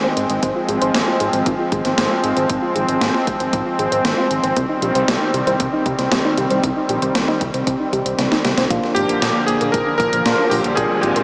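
Nostalgic and cinematic, this synthwave excerpt moves at 116 BPM in a straight 4/4, with a brassy, evolving analog pad carrying sidechain pumping under a soft, round pluck arpeggio that carries a filter sweep and tape echo, while a fat, saturated analog bass, a punchy electronic kick and a gated, overdriven 80s drum machine of hi-hat and snare fill out the groove over chords of Fm/Ab, Cm and Bb. After a drum fill, at 8.7 s a barky tine electric piano adds filtered stabs in the background, and a clear, clangy electric grand piano takes an up-front melody at 8.9 s as a very quiet riser enters at 10.1 s. The whole mix is dreamy and soaked in a huge ambient reverb, with a small-speaker character.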